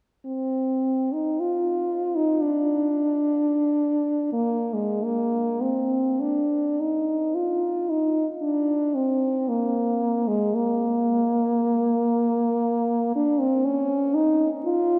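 Lonely and mournful, this classical excerpt features a solo French horn playing freely in 4/4 with rubato, drifting between 33 and 60 BPM. The horn sits up front with a warm, light vibrato, moving between Ab3 and F4 from 0.3 s, with a new section arriving at 5.1 s and continuing to 15.0 s. A dark production and a long, wet cathedral reverb of 4.5 seconds surround the lone instrument with vast, echoing space.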